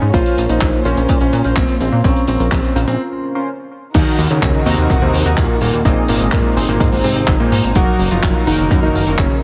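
Italo disco at 126 BPM in Eb dorian, nostalgic and danceable, this short cut from a longer piece runs on a straight feel. An electric grand piano carries the melody with a clangy low end and long sustain, roughened by vintage 12-bit sampler grit and trailed by digital delay. Beneath it, a glossy chorused synth bass with a plucky filtered edge anchors the low register, while a retro chorused polysynth adds stabs with a filter sweep from the background. A dark, intimate chamber string section holds sustained chords, bowed softly with light vibrato. A punchy, tape-warm electronic kick drives the groove alongside a tight, mid-forward funk kit with hi-hat, handclaps and crash cymbal, pausing for a break at 3.0 seconds before the new section arrives at 3.9 seconds, moving through Ebm, Ab and Ebm/Gb. The mix sits in light small-room reverb and is heavily compressed, giving it a dense, radio-ready sheen.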